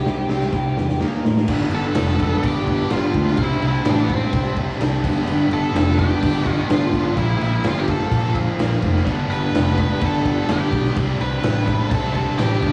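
Quiet-loud alternative rock in G mixolydian at 127 BPM, this bittersweet, cathartic cut from a longer piece sounds like a live gig heard through a venue's PA, with club reverb and vinyl crackle. A drum fill opens it on a raw garage kit, punchy and saturated with a rolled-off top, while a lo-fi guitar through a small old amp picks chorus-soaked arpeggios in the background until 1.5 seconds. An octave-fuzz lead guitar carries a dark melody throughout, set against a distorted guitar riff and an up-front, growly fuzz bass played with fingers. At 1.5 seconds the second section arrives with a very quiet, compressed overdriven guitar riff and a dark bowed string section holding sustained chords with vibrato and portamento, as the harmony moves between G, Csus2 and Bbsus2. At 9.1 seconds a double-tracked high-gain guitar slips in very quietly beneath the riffs, thickening the wall of sound.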